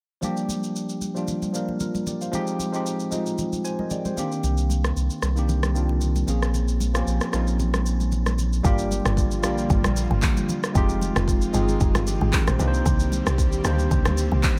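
Amapiano with a late-night, deep mood, cut from a longer piece: a worn, slightly out-of-tune tine electric piano with light overdrive and subtle chorus accompanies up front over a deep house drum kit of deep kick, handclaps, rim click and shaker, while very quiet, damped congas sit close and dry beneath, and the piano adds a fill at 3.4 seconds. A round sine sub bass enters at 4.4 seconds. At 8.6 seconds the drop arrives, bringing a woody, punchy log drum bass and an airy, breathy pad with chorus and sidechain pumping, all within light digital reverb.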